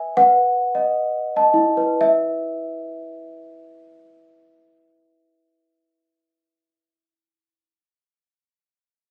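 In a 6/8 with a straight feel, this lullaby moves very slowly, around 30-36 dotted-quarter beats per minute, and it slows down over its first 2.0 seconds. Cut from a longer piece, it is a dreamy, tender classical fragment for a worn celesta playing alone from start to finish, tuned slightly below standard pitch at A4 = 438 Hz. The celesta sits up front, its bell-like tone softened by felt hammers into something dark and mellow, with a faint out-of-tune quality that adds to its aged character. Its line stays within a gentle span from E4 to A5, resting on a B7 harmony near the opening before settling onto E5 at 2.0 seconds, where a new passage begins and carries on until 5.9 seconds. Captured on a phone in the room and given light reverb, the sound keeps an intimate, delicate closeness.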